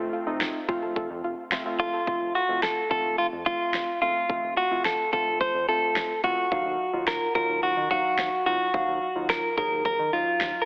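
Synth-pop at 108 BPM with a driving, melancholic feel, cut from a longer piece: a mellow, chorused square-and-sawtooth keyboard plays accompaniment throughout, while a smooth, detuned pad and a soft, dark pluck arpeggio with tape echo sound only in the first 2.0 seconds; a deep, round analog bass sits in the background, a punchy electronic drum kit with a fat snare sits up front, and a clean, direct-recorded electric guitar carries the melody with tape echo from 1.8 seconds, as the harmony moves from F to Ebmadd9 at 6.5 seconds under a lush hall reverb and a heavily compressed, telephone-like radio sound.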